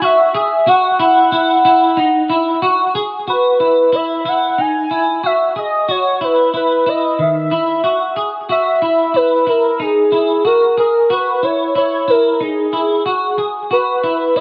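Floating and blissful, this short dream pop fragment pairs a velvety, smooth sawtooth synth lead carrying the melody up front, with vibrato and portamento, against clean picked arpeggios from a semi-hollow electric guitar; both parts are bathed in chorus, plate reverb and tape echo inside a dark, warm production with a wet booth ambience.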